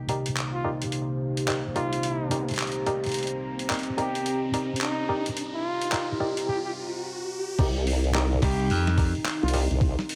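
Glitch hop with a playful, funky swing, where a breathy, whispered solo trumpet and muted, stringy clav stabs through a gritty 12-bit sampler float over moody analog and ambient pads and a pitched-down, tape-warm boom bap kit, while an electronic riser plays from 1.7 s until the drop at 7.6 s brings in a thumpy kick, a sawtooth formant-sweep wobble bass and, briefly at 8.4 s, a bright, punchy slap bass, all set in a lush hall reverb.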